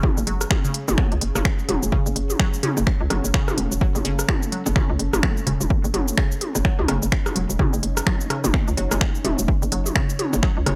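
Opening on a punchy, overdriven kick and a click kit of blips, rim clicks and toms with tape echo, over a deep, warbling, dark pad with chorus and sidechain pumping in the background, this hypnotic, sparse minimal techno fragment at 127 BPM in F# dorian, swung on the sixteenths over a single F#m chord, brings in a hollow, bouncy FM bass and a garage kit of cabasa, finger snaps and crisp hats at 0.2 seconds, then a squelchy, resonant blip pluck through phaser and analog delay, before a bright, pulsing gated texture surfaces at 9.8 seconds, the whole set in a dry, gritty recording.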